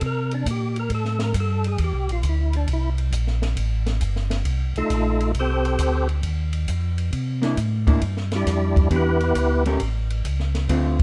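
A swung 4/4 groove drives this bluesy, greasy soul jazz organ trio fragment, with a compact cocktail drum kit of dark cymbals, a high-tuned snare and a tight kick sitting dry and up front. A fat, lightly overdriven tonewheel organ with percussive third-harmonic attack, key click, chorus vibrato and a slow rotary speaker carries the solo melody until 9.6 seconds, while a second, round and mellow tonewheel organ holds down the bass through its own slow-spinning rotary. A clean, picked hollow-body electric jazz guitar joins as accompaniment at 7.4 seconds over the C9, Em7 and A changes, all within a dark production and light reverb.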